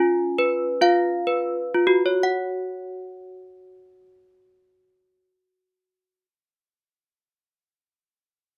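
In a rubato 6/8 that slows over the first 2.2 seconds, this dreamy, innocent classical lullaby, cut from a longer piece, sets solo desk bells up front in light reverb within a dark production, their clear, bright, clanky ringing slightly out of tune as the harmony moves from C#7 to F#5 at 2.2 seconds before the bells fall silent at 6.7 seconds.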